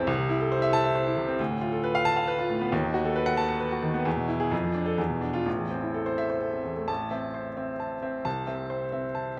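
A clear, intimate baby grand piano sits up front in a moderate scoring-stage reverb, its long sustain and audible action noise giving the sound a natural closeness. This passionate, agitated classical virtuoso study in A minor moves in 3/4 at 134 BPM with a rubato feel, the solo piano ranging from A1 to A5 across a brief cut from a longer piece. The harmony presses from A minor through diminished and dominant colours toward E before settling back on A minor, with a new section beginning at 6.9 seconds.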